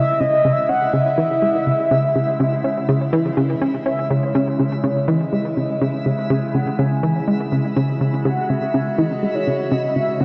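A straight 4/4 pulse from a punchy, plucky analog bass riff with a filter sweep carries this expansive, cosmic stretch of sequencer-driven space music, cut from a longer piece, as a round, horn-like synth lead with vibrato sings the melody over a bright, morphing wavetable pad and a twinkling granular texture that fades in, all bathed in huge ambient reverb and a warbling, worn cassette-tape drift.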